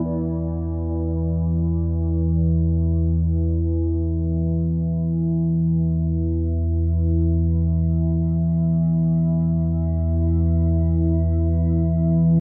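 This dark ambient drone excerpt opens at once on an up-front analog drone, nasal and detuned, its sawtooth and pulse-wave tones shifting with pulse-width modulation and a moving notch beneath a chorus sheen. Above it, a moody analog pad holds sustained chords built from square, sawtooth, triangle and sine waves with a sub octave and a wave-folded edge, fading in from 0.1 seconds under a subtle chorus. A quartz singing bowl struck with a wooden striker sits far in the background, pure and ringing with slow beating, fading in alongside the pad. The mood is dark and unsettling, floating in free time within a huge ambient reverb. Worn cassette tape gives the whole recording a warbly pitch drift, and the piece is cut from a longer work.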